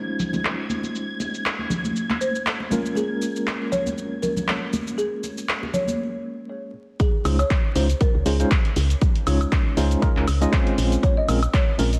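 Deep house at 119 BPM in Db major with a sunny mood, where a rustic soft-mallet folk marimba carries the melody over worn, slightly out-of-tune tine electric piano stabs with tremolo, 12-bit sampler grit, sidechain pumping and tape echo, joined by a silky string machine texture with phaser and ensemble chorus, a swung analog drum machine of handclaps and low-pass-filtered hi-hat, shaker and woodblock, and distant, bright congas, until the strings and congas stop at 6.0 s and the drop at 7.0 s brings an overdriven, up-front electronic kick and a round, dark FM bass pumping beneath the Dbmaj9 and Bbm7 chords, with light reverb, vinyl crackle and a dense, heavily limited master.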